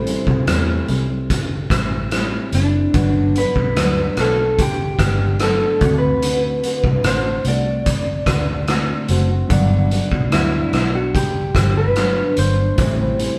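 A straight 4/4 groove at 73 BPM from a raw garage drum kit, with its punchy kick, hi-hat and rim click sitting up front, carries this hazy, dreamy indie and bedroom pop excerpt in G major. A round, foam-muted vintage electric bass and a full-bodied fingerpicked nylon-string guitar, with finger squeak and warbly pitch drift, support the melody of a dark, slightly broken-up, lo-fi electric guitar through a small old amp. A worn, slightly out-of-tune, lightly overdriven tine electric piano hums in the background, the chords move from Am7 through Gmaj7 and D7 and back, and the band plays live in a stone room with a moderate 1.2-second reverb.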